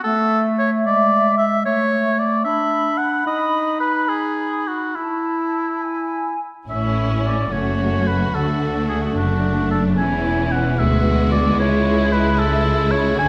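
A distant, pure flute ensemble, a mellow up-front oboe and a warm solo clarinet open this stormy, restless classical-period orchestral excerpt in a rubato 6/8, with the flutes and clarinet stopping at 6.4 s while the oboe carries on as bowed strings enter at 6.7 s: expressive violins on the melody over an even second violin line, distant smooth violas, a focused, lush cello section and an intense, clear double bass, set in a wet scoring-stage reverb.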